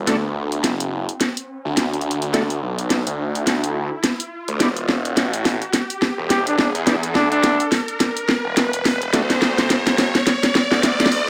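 A front-and-center electronic drum kit with a cracking snare and bright hats drives this swaggering, gritty glitch hop excerpt at 106 BPM with a swung 16th-note feel, building up through a drum fill that spans the whole passage while a background riser climbs from 0.9 seconds. Underneath, a thick, swirling detuned saw bass with phaser and overdrive sits up front, and a full, overdriven tonewheel organ with slow rotary speaker, chorus vibrato and delay plays stabs in the background over D and E7(no3) chords until 9.2 seconds. A breathy jazz-style trumpet with light vibrato and a smooth top steps in briefly for a solo phrase at 6.3 seconds, all set in a moderate studio reverb.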